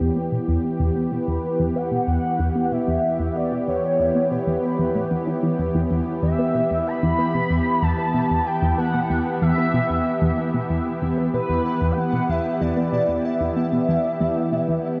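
A smooth, dark portamento lead with vintage vibrato floats over a full-bodied, ring-modulated resonant pad and a tight, driving sequenced synth riff coloured by phaser and delay, while a faint, tempo-synced pulsing texture slowly fades in through all 15 seconds, giving this fragment of expansive, cosmic, sequencer-driven ambient space music a vast 7.5-second reverb and the worn, warbling pitch drift of old cassette tape.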